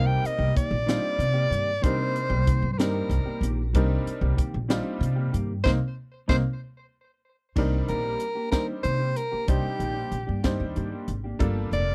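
Electric jazz fusion in 6/8 at 63 BPM, this slick, intense passage in C minor is cut from a longer piece. A clear soprano saxophone carries the melody between G4 and G5 with vibrato and a soft attack, sitting present and up front in a jazz solo style. A bright grand piano with a brilliant, slightly worn tone and short sustain supplies accompaniment, while a mellow, dark electric guitar, clean and compressed with analog chorus, adds fingered stabs. A woody, thumpy pizzicato upright bass on steel strings anchors the low end, and a crisp, polished fusion kit enters at 0.3 seconds with a punchy kick, high-tuned snare, hi-hat and dark crash cymbals. The band hits an accent from 5.7 to 7.6 seconds before the harmony moves from Cm7 to Cm9 and then Gm9, all captured in a dry, close 1970s-style studio sound.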